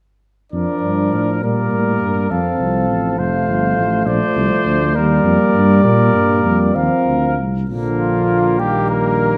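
From 0.5 s a classical brass quintet plays a stately 6/8 passage at 67 BPM in Bb major, cut from a longer piece: the warm, close-miked cornet carries the melody over a clear, punchy trumpet second line with light vibrato heard from a distance, a close-miked French horn with light vibrato and a background trombone supply accompaniment, and a dark tuba bass sits up front, the ensemble ringing in a reverberant recital hall with a faint mains hum before settling on an Eb/Bb chord at 8.6 s.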